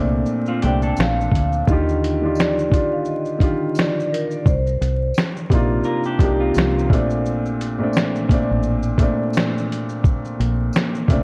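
An 86 BPM groove swung on the sixteenths drives this nostalgic, mellow lo-fi hip hop excerpt in Bb major, with a gritty, compressed sampler-style drum kit of thumpy kick, fat snare, hi-hat, shaker and finger snaps sitting up front over a dark, round, foam-muted fingered electric bass and a faint, jingly tambourine in the background. A soft, intimate felt-muted upright piano with a low-pass filter carries the Bbmaj9, Ebmaj9 and Cm11 chords from the start, while a soft-mallet vibraphone, airy and ringing with slow motor vibrato and tape echo, sings the melody from 0.6 to 5.1 seconds, and a clean, picked electric guitar adds brief filtered, echoed phrases, the second arriving at 5.8 seconds. The whole mix is steeped in worn cassette warble, vinyl crackle, pitch drift and light digital reverb.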